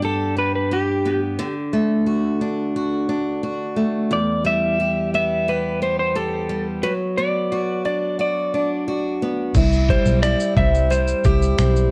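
In a straight, unhurried 4/4, this easy-going, heartfelt acoustic pop fragment opens with a warm, picked steel-string acoustic guitar, concert-toned and up front, carrying the accompaniment while an electric slide guitar sings the melody above it. The slide part is fingered and compressed, its tone slightly broken-up and trailed by a digital delay. The harmony moves from G through D and Em to Bm/F#, landing on C at 9.6 seconds. Just before that, at 9.5 seconds, a dusty, sampler-style drum kit arrives, gritty and overdriven, with a thumpy kick, finger snaps, shaker and crash cymbal. A vintage muted fingered bass joins at 9.6 seconds, dark, round and punchy through transformer saturation. Light reverb surrounds the parts, and the recording carries the worn, warbling pitch drift of old cassette tape.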